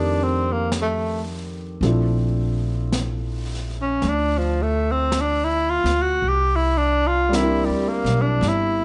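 Light reverb and a mellow, rolled-off top end frame this late-night, romantic jazz ballad excerpt, played with a slow swing. A breathy, whispered tenor saxophone takes the solo melody up front, its soft attacks, scooped notes and vibrato floating over an intimate grand piano whose action noise is audible, while a woody pizzicato upright bass sits close beside it. A brush kit with a high-tuned snare and hi-hat enters at 0.7 seconds, sounding like a small room, as the harmony moves from F13 to Bbmaj9#11 to C9.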